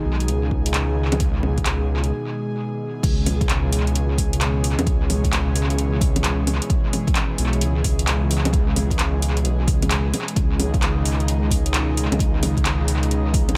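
Future garage at 131 BPM in C# minor, carrying a rainy, wistful mood with a swung 16th-note feel, this excerpt opens on a breathy, chorused pad holding sustained chords that pump against the sidechain. A menacing, detuned saw bass sits up front with a saturated filter swell, while a punchy, overdriven electronic kick anchors a deep house kit of bongos, handclaps, crash and metallic hats soaked in tape echo. After a brief break from 2.1 to 3.0 seconds, the harmony moves from G#m to C#m7, settling on G#m/C# at 10.4 seconds within an echo-heavy mix of light digital reverb.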